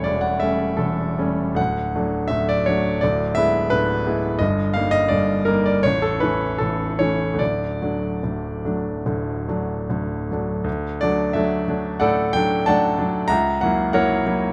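The rhythm flows freely in a rubato 4/4, with the pulse drifting between 71 and 95 BPM as this romantic character piece for solo piano unfolds in D major. The mood is lyrical and hopeful, and a bright grand piano carries everything alone, spanning A0 to A#5 from the opening moment to 14.5 s. Close, detailed microphones place the instrument up front with an intimate, polished presence, and the noise of its action is audible beneath the brilliant tone. The harmony opens on A7/E and moves through D, E7/D and a colorful Eb/G before settling back toward A and D. A contrasting passage begins at 10.7 s and touches F#7/C# before the fragment, cut from a longer piece, breaks off. Light reverb lends the sound a touch of space while keeping the playing clear and immediate.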